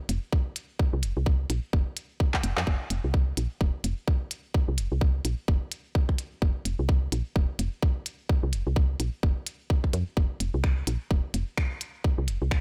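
A woody, round FM bass with sidechain pumping opens this cut from a longer minimal techno track at 0.1 s, alongside a clicky electronic kit of finger snaps, handclaps and hi-hat swung on the sixteenths at 128 BPM in 4/4, tuned to A4 = 444 Hz. A tight electronic kick joins at 0.3 s, and a short drum fill arrives at 2.3 s. The mood is clinical and sparse, with every part up front in a dry mix, though the kick and click kit carry the air of a large room.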